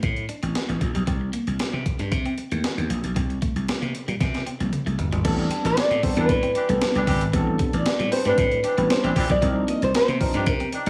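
A slick, late-night early-eighties boogie funk groove at 115 BPM opens with a growly, punchy slap bass and a thumpy, overdriven 12-bit drum machine up front, while a scooped, clean electric guitar riff with subtle chorus sits in the background. After a drum fill at 4.2 seconds, a barky tine electric piano with analog chorus enters at 5.2 seconds as accompaniment, and a small, fingerpicked nylon-string guitar carries the melody. A clear, vintage horn section with light vibrato adds a second line from 6.2 seconds, all set in light digital ambience with a faint mains hum.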